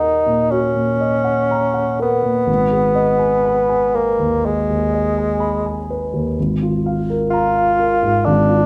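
Romantic classical duo in Eb minor, elegiac and melancholic, moving at a slow, rubato 60-64 BPM in 4/4, cut from a longer piece. An up-front bassoon carries the melody with a light vibrato and a warm tone, sitting in its middle range, while a grand piano accompanies from deep bass to high treble, the harmony passing from Eb minor to Ab minor at 2.5 seconds and onto a Bb seventh over Ab at 6.4 seconds. Both instruments sound close and intimate within a moderate recital hall reverb.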